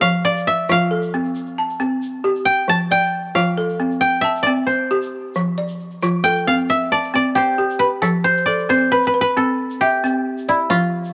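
West African traditional string and xylophone music, this short excerpt cut from a longer piece moves in a flowing, joyful 12/8 at 90 BPM in F lydian, with a straight feel. The koto carries the melody throughout, played with fingerpicks for a dry, woody tone that sits up front, and it takes a solo turn during the first 8.0 seconds. Beneath it, the balafon spins arpeggios from F3 to A5, its hard rubber mallets giving a round, vintage sound that is band-limited by the cassette tape both melodic parts pass through. A tube shaker adds a grainy, bright texture, compressed and saturated, sitting low in the mix. The harmony rocks between F and C5 before a shift at 8.0 seconds brings a new passage that moves from F to C. Light reverb and studio ambience frame this home cassette recording.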